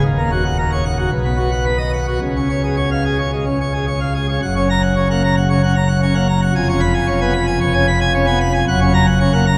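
A wet cathedral acoustic with a long seven-second reverb surrounds this short cut from a longer classical organ toccata, and the listener seems placed further back in the room. A solo pipe organ plays throughout on a full plenum, its mixtures giving a brilliant, baroque voicing with a crisp chiff at the start of each note. The range reaches from a deep D#1 up to B5, so the sound feels both grounded and bright. In straight 4/4, the opening passage moves from D#m7 through B to C#, and a new phrase begins at 4.4 seconds on F#, passing through C#7/E# before settling on F# again at 8.7 seconds. The mood is majestic and brilliant, with the organ's grandeur filling the large stone space until the cut ends at 9.6 seconds.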